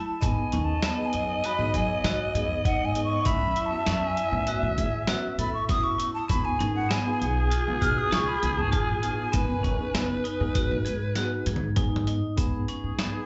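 Progressive instrumental band music in an uneven 5/4 meter with an intricate, tense mood, where a breathy, hollow jazz flute carries the melody over tine electric piano sitting in the background, ringing hard-mallet vibraphone arpeggios, woody pizzicato upright bass, a raspy alto saxophone second line, a muffled, thumpy lo-fi sampler-style drum kit up front and a very quiet grainy tube shaker, with slapback echo on the flute, piano, vibraphone and saxophone, a drum fill from 11.2 seconds joined by an electric piano fill at 11.5 seconds, and the whole heard through a club PA with moderate reverb.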